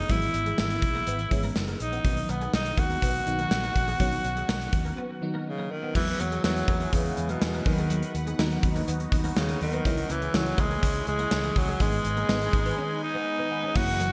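A straight 4/4 pulse at 123 BPM drives this nostalgic, romantic 1980s-style pop excerpt, where a gated drum kit with a punchy kick, bright cymbals, tambourine and a stone-room sheen sits up front alongside a raspy, forceful tenor saxophone melody with light vibrato, over a round, dark fretless bass, a dreamy, detuned FM electric piano with chorus and phaser, and a very quiet, twangy twelve-string guitar riff, while a resonant sawtooth pad joins in the background at 6.0 s and the electric piano fills a break at 12.8 s, all within a lush hall reverb and bright digital polish.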